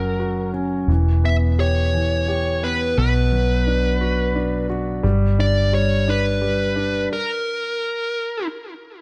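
A six-eight pop ballad in 6/8 at 58 BPM, aching and melancholic, with a dark, smooth overdriven lead guitar carrying the melody through delay while an intimate concert grand piano, full of audible action noise and long sustain, and a round, punchy foam-muted electric bass accompany it over F#, Em, Bm and G. At 7.1 s the piano and bass stop on a break, leaving the picked guitar alone until 8.5 s. The whole sits in a small room with light reverb, the guitar and piano up front.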